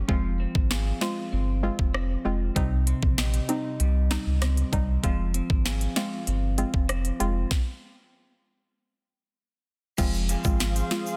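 The recording sounds dense and heavily limited, set in a digital ambience that gives this short cut from a longer dancehall piece a hypnotic, tough edge in a straight four-beat metre. An electronic island pop drum kit sits up front with an overdriven bite, its knocking kick, sharp snare, crisp hats, rim click, finger snaps and crash cymbal driving the groove. Beneath it a deep sine sub bass holds down the low end, while a soft, dark pluck with chorus and sidechain pumping carries the accompaniment alongside an electric guitar at the edge of break-up playing picked, compressed arpeggios. The harmony moves between minor chords before a stop from 7.5 to 10.0 seconds. When the music picks up again, a ringing tube shaker slips in close and dry in the background, and at 10.3 seconds a glassy, warbling FM pad adds ethereal sustained chords with ensemble chorus, built-in reverb and sidechain pumping.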